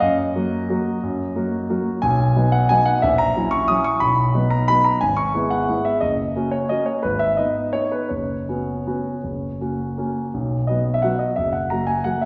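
A classical piano waltz in 3/4, elegant and graceful, with a supple rubato feel in this brief passage cut from a longer piece. A solo grand piano, warm and natural in tone and placed up front, ranges from deep bass to bright upper notes, moving through a chord progression before settling into a new section at 10.3 seconds. A wet recital-hall reverb surrounds the instrument, giving the sound the soft, rounded ambience of a church or concert hall.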